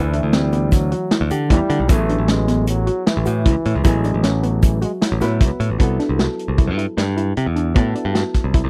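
A vintage drum kit sits up front with a tight kick, a medium-tuned snare and hi-hat, its tone mid-forward with a rolled-off top, driving this bright progressive instrumental in 5/4 at 153 BPM with a straight feel. Beside it, a growly, punchy picked electric bass plays the low line, bright and direct. A mellow trombone carries a second line in a classical style, with light vibrato and a soft attack, until 5.6 seconds. Further back, a clean, compressed hollow-body jazz guitar, double-tracked and dark, plays accompaniment. A soft, round synth pluck with chorus plays arpeggios, and a grainy tube shaker adds faint percussion. The harmony moves from Cmaj7/D to A69 before settling on Cmaj9 at 5.8 seconds in this dry, close, 1970s-style studio excerpt cut from a longer piece.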